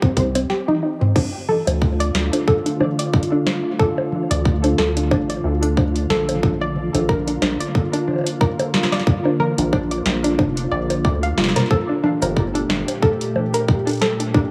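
A soft, round pluck spins dark arpeggios over a tight, up-front electronic kick from the very start of this glitchy, cerebral IDM cut in D minor, set at 91 BPM with a swung sixteenth-note feel and dub echo trailing the pluck. A rubbery, resonant acid bass with a square-wave bite and filter sweep arrives at 0.2 seconds alongside a booming analog drum machine of crisp snare, metallic hats, shaker, bongos, congas, toms and crash fed through analog delay, which plays a fill before the harmony moves from C minor to D minor. A glassy, ethereal FM pad with slow-attack chords, ensemble chorus and 12-bit sampler grit joins at 1.9 seconds, floating through B-flat and G minor add9 in an echo-heavy mix bathed in spring reverb.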